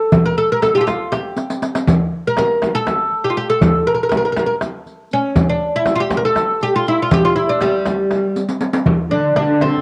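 A home cassette recording with spring reverb and small-room ambience carries this hypnotic, longing fragment of Turkish makam ensemble music in 7/8, where a bright, woody fretless oud with double strings leads up front over a close, dry clay-shell darbuka, a deep frame drum and a vintage, band-limited riq, with drum fills at 1.4 and 8.4 seconds, before a lush bowed cello section and a raspy, growling clarinet join at 9.1 seconds.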